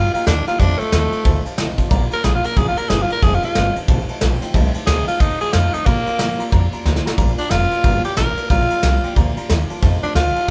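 Swung eighths drive this rollicking, upbeat rockabilly excerpt, where a raspy, forceful tenor saxophone carries the melody up front over a thumpy, woody pizzicato upright bass and a soft brush kit with dark cymbals and a tight kick, while a bright picked steel-string acoustic guitar and a mellow, long-sustaining upright piano sit in the background, a drum fill at 6.9 seconds ushers in the next passage, and light reverb lends the feel of a band playing live in one room.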